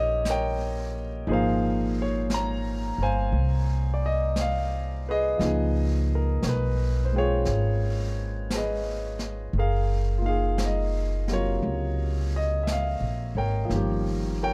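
A dark, dry recording places a concert grand piano with deep low notes and a woody pizzicato upright bass up front in this melancholic, wistful jazz ballad, a brief cut from a longer piece. The piano accompanies over lush chords such as Ab69, Db13 and Gbmaj9 while the bass holds the low end, and a softer brush kit of snare and hi-hat joins at 0.3 s in a natural studio room, giving the slow swing a gentle, intimate pulse.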